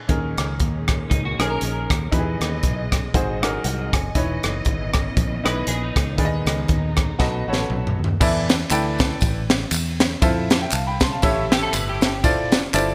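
Swung eighth notes at 118 BPM in 4/4 drive this uptempo gospel passage, cut from a longer piece, with a solemn yet fervent mood. The crisp fusion drum kit sits up front with a punchy kick, high-tuned snare, bright cymbals and a pumping small-room sound, and it closes the opening stretch with a fill. The fingered electric bass is foam-muted and direct. A clear, slightly worn grand piano, also up front, carries the accompaniment and adds a fill of its own. Dark, lush bowed strings with vibrato and portamento hold sustained chords in the distant background until 8.2 seconds, when tambourine and handclaps enter, close and dry. A clean, picked electric guitar, compressed and treated with ensemble chorus and delay, drops in short second-line phrases starting at 1.1 seconds, all framed by light reverb and a 1980s-style digital production.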